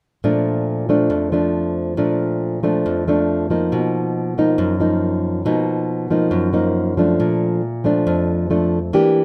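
Heard through a rough home-demo mix bathed in wet studio reverb, this sunny, sophisticated bossa nova excerpt at 138 BPM in Bb major features a lone nylon-string guitar, up front and classical in tone, its thumb-plucked notes carrying audible finger squeak as it moves from Bbmaj7 to Bmaj7#11 at 3.7 seconds and returns to Bbmaj7 when a new section begins at 7.2 seconds.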